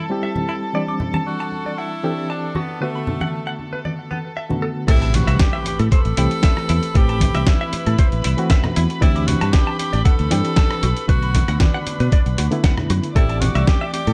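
A breathy, whispered tenor saxophone carries the melody from 1.3 seconds in this sleek, groovy nu-disco cut at 116 BPM in A dorian, over a barky electric piano with fast tremolo and sidechain pumping, gut-toned bowed strings, a twangy clean guitar riff with lush chorus and analog delay, and bright soft-handed congas, until the drop at 4.9 seconds brings in a fingered electric bass, a gritty sampler-style kit with a fat snare, a thumpy electronic kick up front and a very quiet impact, all in an echo-heavy mix with light reverb.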